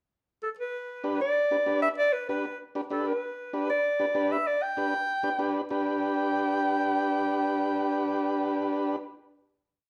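A close-miked clarinet leads this short, festive Latin piece, playing a jazz-style solo melody built from song-like motifs, with a warm subtone, scooped notes and vibrato. It enters at 0.4 seconds over a brief pickup bar, and an overdriven combo organ joins at 1.0 seconds with rhythmic triad chords in a vintage, reedy tone shaken by heavy vibrato. The tune moves at a danceable 193 BPM in straight 4/4, settling firmly on G major. After one statement of the main section, the piece arrives at a final chord at 5.7 seconds and holds it to the close. Both instruments sit up front, while a wet studio reverb gives the whole a sense of being heard from further back in the room.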